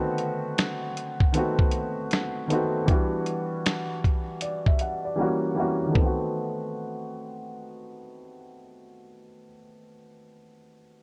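The recording has a worn cassette-tape character with a warbly pitch drift and light reverb, framing a reflective, melancholic lo-fi hip hop fragment cut from a longer piece. It moves at a relaxed 78 BPM in 4/4 with a 64% swing on the 16ths, tuned to A4 = 439 Hz. An up-front, woody upright piano carries the accompaniment from 0.0 to 11.0 s, low-pass filtered and shaped by a filter sweep through the opening 6.0 s, voicing B7b9, Em9 and F#7b9 before returning to B7b9 as the second section begins at 6.0 s. A dusty, sampler-style soul kit, compressed and gritty, with a thumpy kick, a medium-tuned snare, hi-hat and finger snaps, sits up front from 0.2 s, drops out at 5.2 s, returns briefly at 6.0 s, and stops at 6.2 s. From there the piano carries on alone through the remaining seconds.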